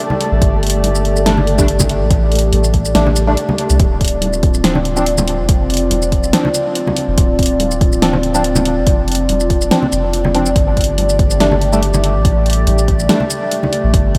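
This deep dubstep excerpt moves at 142 BPM in a swung half-time feel, brooding and meditative in D minor. A dark, detuned analog pad holds sustained chords throughout, shimmering with chorus and phaser, while a grainy, flickering texture hovers in the background until 3.8 seconds. A round, soft sub bass anchors the low end beneath a deep, tape-warm electronic kick and a layered deep house kit of hi-hat, shaker and fat snare. Ringing congas played with soft hands sit far back with dub echo, and from 1.3 seconds a hollow, organ-like stab adds percussive, decaying hits treated with ensemble chorus and dub echo. The harmony drifts from Gsus2 to Dm7 and back to Gsus2, all set in a dreamy mix soaked in a huge ambient reverb.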